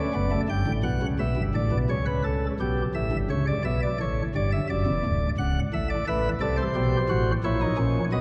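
A deep church reverb with a long 3.9-second tail surrounds this dark-toned recording, a short cut from a longer baroque-style fugue in three parts for pipe organ. A solo chamber organ plays throughout, its sparkling flute stops sitting up front with a light, bright chamber voicing and an audible chiff. The fugue moves at 86 BPM in a straight 4/4 in E minor, and its mood is joyful yet stately. The organ spans a range from a low C#1 up to G5. The harmony passes from Bm through Em/G, C#dim, A9 and D before turning to F#dim/A and closing on A#dim at 7.4 seconds, just before the cut at 8.2 seconds.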